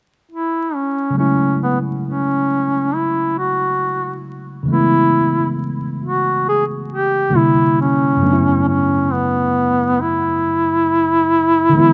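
Sultry and soulful, this short R&B excerpt moves at a slow 68 BPM in 4/4 with a swung sixteenth-note feel, set in F# minor. A warm duduk carries the melody from 0.3 seconds, its soft attack and folk-style vibrato sitting up front in the B3 to G#4 range. A tine electric piano enters at 1.1 seconds as accompaniment, sounding worn, warm and slightly out of tune, lightly overdriven and heard as if through built-in speakers, also placed up front. The harmony settles on F#m9 before shifting to C9 and then B9sus4 over F#. Light reverb and small room ambience frame a rough home-demo mix, with vinyl crackle adding a dusty, lived-in texture.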